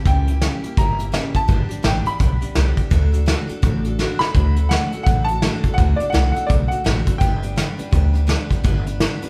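A clear, slightly detuned upright piano carries the melody from the first instant over a bright, full-bodied picked steel-string acoustic guitar, opening this short rockabilly cut from a longer piece at 168 BPM in G major with a swung eighth-note feel and a retro, rowdy mood. Almost at once a woody, thumpy pizzicato upright bass on gut strings and a dark, smooth brush drum kit with a tight kick and rolled-off top join in, the drums sitting up front, with a quick drum fill at 4.0 seconds. The chords move from C#dim7 through G and D before settling back on G at 7.2 seconds, and the whole band sounds like it is playing live together in one large studio room with moderate reverb.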